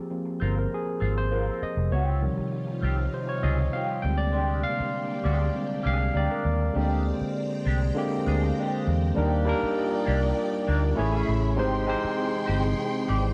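A barky, lightly overdriven tine electric piano takes the lead at the start of this smooth, lush 1970s-style soul excerpt at 99 BPM, joined by a bright, twangy electric guitar riff with wah and spring reverb, a round, punchy foam-muted bass up front, shimmering string-machine violins from 1.9 seconds, a mellow, ringing vibraphone in the background, and a dark, expressive bowed string section adding a second line from 9.2 seconds, all within a dark, softly reverberant studio sound.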